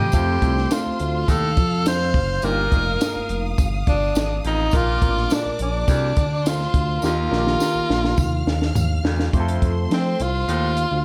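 A clear, up-front tenor saxophone with subtone and slapback echo carries the melody through this joyful, uptempo 1960s-style soul excerpt, over lush bowed strings on a second line, a distant baritone saxophone riff, a barky tine electric piano through a phaser, a smooth detuned synth bass, a compact cocktail drum kit with a punchy kick and high-tuned snare that plays a fill from 7.0 to 9.3 seconds, and a jingly tambourine in the background.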